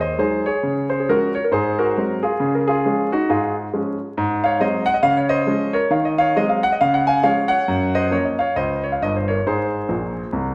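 Playful and swinging, this stride piano jazz excerpt at 136 BPM in Db major features a clear, polished grand piano played solo and up front from G1 to Ab5, set in a lush large-studio reverb with a live-room feel and a layer of vinyl crackle, moving through Ab7, Db and Gbmaj7 changes before a brief fill at 9.9 seconds.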